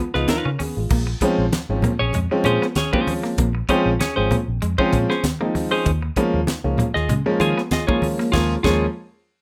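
A straight 4/4 funk groove at 97 BPM struts with energy, the tight funk drum kit pairing a high-tuned snare and dry kick with hi-hat and crash while close, low-tuned congas add thin-skinned percussion and a foam-muted, round vintage fingered bass punches underneath. A twangy guitar at the edge of break-up plays a riff with warbly pitch drift until 8.3 s, as a compressed, clean electric guitar and a woody, mellow upright piano sit up front with accompaniment and stabs over Db9, Bbm9 and Eb9sus4 chords. This is a short cut from a longer piece with a rough home-demo feel and light reverb, closing on a band accent from 8.3 s.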